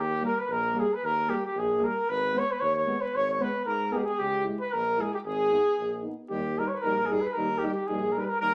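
Through vinyl crackle and a wet studio reverb, this restless, bittersweet Balkan folk brass fragment moves at 113 BPM in a straight 2/4, with a mellow, up-front trumpet carrying the melody over a punchy alto saxophone second line with vibrato, two euphoniums adding classical-style accompaniment from 0.2 seconds, and a smooth-topped tuba holding the bass.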